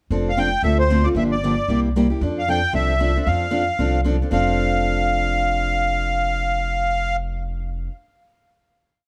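A brisk swing at 229 BPM, with a two-beat root-and-fifth upright bass, woody and thumpy on gut strings, under a boxy parlour steel-string guitar picked four to the bar with short accents on two and four. This charming jazz manouche piece in F major moves through a turnaround from F69 to F6 before settling on a final chord from 4.3 seconds. Up front, a sweet, reedy accordion with light tremolo tuning and tape echo carries a motif-based melody in sentence phrases from 0.3 to 7.2 seconds, all set in light reverb.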